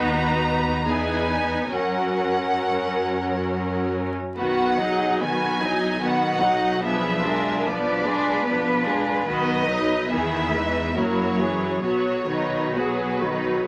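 Serene and warm, this fragment of a slow romantic movement for string orchestra sways in 3/4 with rubato at 65-76 BPM in B major, as an up-front, rich violin section sings the vibrato-laden melody over a second violin line, a focused, smooth-topped viola accompaniment sits forward too, an even, close-miked cello section rests in the background, and a clear, intense double bass section anchors the bottom, all bowed in a moderate studio ambience dusted with vinyl crackle.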